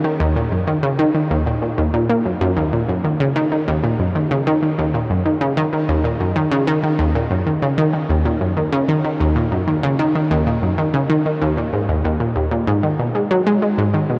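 An analog pluck synth opens alone at 0.0 s and carries this ambient fragment of a longer piece, moving at 95 BPM in a straight 4/4 in Eb minor. Its detuned sawtooth tone is round and bright, with a fast attack and a filtered pluck that decays, set up front and thickened by chorus and delay, ranging from Eb2 to Bb3. A huge, wet reverb with an 8.9-second tail stretches every note into an expansive, cosmic space. The whole recording sounds like worn cassette tape, with warbling pitch drift and its highs stopping at 10.9 kHz. At 12.7 s the music moves into a new section, and the pluck keeps sounding until 14.2 s.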